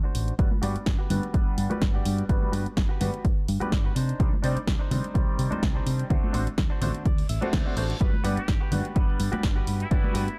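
A twangy, clean electric guitar riff with 12-bit sampler grit opens this sunny, feel-good excerpt of filtered disco house, joined by background maracas and congas played with hard hands and a foam-muted fingered electric bass, all pumping under sidechain and low-pass filtering, along with a punchy analog drum machine whose hats pump under sidechain. A bright grand piano with audible action noise, phaser and long sustain comps through Gmaj7, Cmadd9 and D7 chords, while a dry, up-front electronic kick anchors the groove and the guitar adds fills. A reverse cymbal at 7.2 seconds leads to the entrance of a nasal, straight-muted trumpet section at 8.0 seconds, all set in a dark, small-room production.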